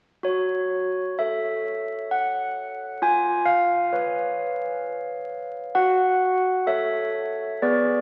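A classical tune for solo handbells, wintry and solemn, moving at a slow, stately pace in three-time over a brief cut from a longer piece. The bells sound clear and ringing with medium clappers, placed up front from 0.2 to 8.0 seconds and spanning B3 to G#5 as the harmony passes from F# minor to C#7/E# at 3.0 seconds and back to F# minor at 5.8 seconds. A long, wet church reverb surrounds them, and the whole is heard through the crackle of a very old 78 rpm record.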